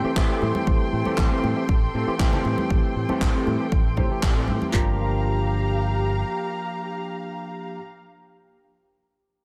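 Nu-disco at 118 BPM in G dorian, sleek and sensual, this short cut sets a barky tine electric piano, a veiled con sordino chamber string section and a dark, background electric guitar riff with chorus and 12-bit sampler grit over a bright envelope-filtered fingered bass, with the piano and strings pumping against the sidechain. A punchy, overdriven pop drum kit sits up front from 0.2 s alongside dry handclaps and very quiet ringing congas, while a clean guitar fill opens the track and filter sweeps move through the bass and electric piano until 4.7 s, where the harmony shifts from Am7 to Gm7. The dreamy mix is soaked in lush hall reverb, with the bass dropping out at 6.2 s as the keys, strings and guitar carry on.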